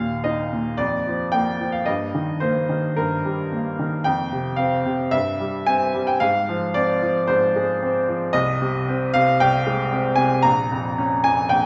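Set in 4/4 at about 112 BPM, the rhythm moves with a free, rubato feel, stretching and easing the pulse in the manner of a romantic character piece. A solo upright piano carries the whole passage from 0.0 to 11.7 s, its sound bright and woody with a brilliant tone and a long sustain, placed up front in the mix. The playing spans from Bb1 up to Bb5, opening on a high Eb5 and moving through inverted harmonies such as Bb/F, Eb/G and Fm/Ab before settling into Ab major at 8.3 s and closing this stretch on Bb minor. The mood is passionate and warm, with the instrument tuned slightly low, to A4 = 437 Hz. A wet recital-hall reverb, typical of a church or concert hall, gives the notes a natural, resonant tail, and the clip is cut from a longer piece.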